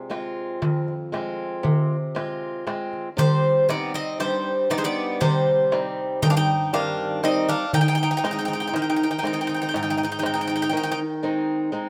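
Heard through a moderate plate reverb, this wistful, dark Greek folk piece in 9/8 at 119 BPM speeds up over Fm, Cm and Ab chords: an up-front, warm, metallic double-strung bouzouki carries the melody above a brighter second bouzouki line, while a boxy, woody old ladder-braced acoustic guitar picks the accompaniment up front and a small, high clay-shell darbuka is played with soft hands.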